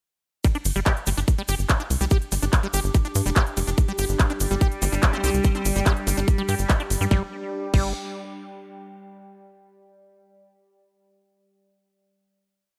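Psychedelic trance at 144 BPM, psychedelic and intense, this short piece opens straight into a drop at 0.4 seconds, where a tight, up-front electronic kick drives a four-on-the-floor pulse under an overdriven dance kit of punchy snare, crisp programmed hats, claps, ride and crash, with a grainy hand-played tube shaker in the background. A dark, galloping sixteenth-note sequencer bass sits beneath a squelchy, resonant acid line whose six-step loop drifts against the bar through chorus, tape echo and sidechain pumping, while a nostalgic, lo-fi pad with phaser warbles in from 2.1 seconds and an overtone-sweeping drone joins at 4.1 seconds. A brief metallic wobble bass flickers in the background with short answering phrases, and the pad rings on into a final chord from 7.1 seconds, set in light digital ambience.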